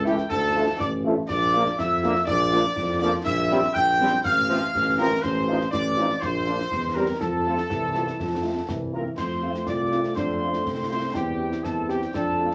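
A military-style march for wind band in F major, proud and spirited, moving at 122 BPM in a straight 2/4 and cut from a longer piece. A clear trumpet section carries the melody up front, close-miked with light vibrato, while an airy small flute group adds a second line above it with tongued, vibrato-touched notes. Beneath them, a dark French horn section supplies soft-attacked accompaniment and a trombone section holds tight sustained chords, both sitting distant and roomy in the background. A warm tuba anchors the bass up front, and concert snare drum, concert bass drum and clash cymbals with dark cymbals sound close and dry. At 9.7 s, shortly after the opening section returns, a mellow euphonium joins with its own second line. The harmony moves from Dm through Bb and C7 to F, then closes on C/E. Wet studio reverb and a layer of vinyl crackle give the whole an aged, spacious character.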